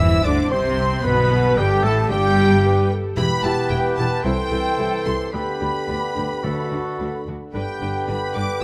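A full orchestra opens together on a bright, cheerful passage of spirited classical music in a straight four, cut from a longer piece. A lush, distant violin section carries the melody high above, joined by a second, closer violin section with expressive vibrato, while an airy flute section, a smooth-topped oboe and a soft, roomy clarinet add quiet second lines. Underneath, a dark bassoon and a viola section with a gentle, even tone fill in the accompaniment, trombones with a clear, vintage edge and a faint French horn section hold sustained chords, and a mellow trumpet section punctuates with tight stabs. A woody double bass section anchors the low end beside a smooth cello section that drops out at 8.4 seconds. Timpani struck with soft mallets give a round, dry pulse at the start and return briefly at 6.4 seconds as the harmony moves through G, E minor and D before settling back on G. 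Close, detailed microphones catch the players inside a moderate scoring-stage reverb.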